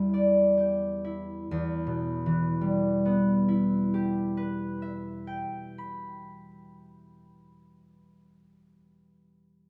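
In a flexible, rubato 6/8 that slows over the first 1.5 seconds, this short cut from a longer classical piece for solo concert harp feels mysterious and gentle. The acoustic harp sits up front, its fingerpicked notes warm and ringing from E2 up to B5 as the harmony settles from Em7 to Em at 1.5 seconds. A wet recital-hall reverb surrounds the playing until it ends at 8.6 seconds.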